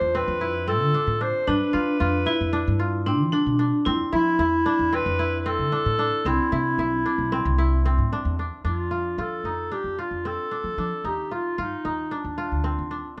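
Contemporary instrumental chamber music in a playful, hopeful 9/8 at 226 BPM in eighths, shifting from F lydian to F mixolydian at 8.7 s, where a mellow, roomy classical clarinet carries the melody up front, a metallic vibraphone struck with hard mallets adds a ringing second line with fast motor vibrato until 8.3 s, a crisp fingerpicked kora supplies arpeggios, and a woody, thumpy pizzicato upright bass on gut strings anchors the low end, captured with close, detailed microphones and light reverb in this fragment cut from a longer piece.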